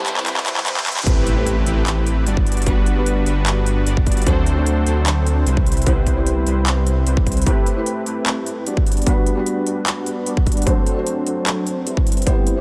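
Light reverb and a digital ambience give this bright, lush future bass excerpt a polished sheen, moving at 150 BPM in a half-time 4/4 feel in C lydian. A short build-up opens it, with a drum fill, a very quiet electronic riser and a filter sweep on the supersaw, before an equally quiet impact lands at 1.1 s alongside a punchy, layered electronic kick placed up front. From there the chords cycle through Cmaj7, Am9, Gmaj7 and D7, carried by a smooth, detuned supersaw riff that sits forward in the mix, low-pass filtered, pumping against the sidechain and trailed by dub echo. Beneath it, a thick, saturated detuned saw bass with chorus and a high-pass filter drives the low end until 7.4 s, while a tape-warm big-room kit adds crisp hi-hats and handclaps. In the background, a felt-muted upright piano plays mellow, intimate accompaniment with audible action noise, also pumping and echoing, and an ethereal, airy pad with phaser and ensemble chorus drifts in barely audibly for a brief moment near the start.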